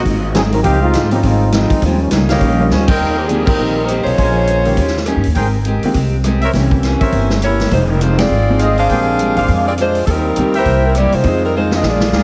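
An up-front, close-miked saxophone section carries the melody with a jazz vibrato, entering at 2.7 seconds as a clear trombone section finishes its featured opening line. This is brassy, swinging big band jazz at 204 BPM in 4/4, settling into Eb major from 3.0 seconds and moving through rich extended chords. A mellow trumpet section with a smooth top and light vibrato punches out stabs. A woody, thumpy pizzicato upright bass with gut strings sits close in front. A swinging drum kit with a punchy kick, medium-tuned snare, ride, hi-hat, crash and rim clicks adds fills and joins the band accents from a distant, roomy spot. A polished baby grand piano and a picked steel-string acoustic guitar, complete with finger squeak, comp in the background, all set in a concert hall reverb and squeezed into a heavily compressed, radio-style sound.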